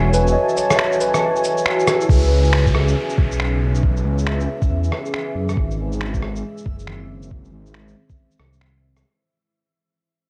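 Future garage at 138 BPM in C# minor, ghostly and nocturnal, with a 62% swing on the sixteenths as a bright tine electric piano with 12-bit grit, sidechain pumping and analog delay sits over a deep, warbling dark pad, a menacing detuned saw bass with tube saturation, and a reversed granular texture in the background, all bathed in a huge ambient reverb with cassette-tape colour. Muffled, tape-softened cabasa, shaker, rim clicks and finger snaps run throughout, while a thumpy, up-front kick and an electronic downlifter arrive at 2.1 seconds as the chords move from F#m7 to C#m7 and then G#7b13 at 5.6 seconds. The piece fades out from 2.1 seconds to the end of this cut from a longer track.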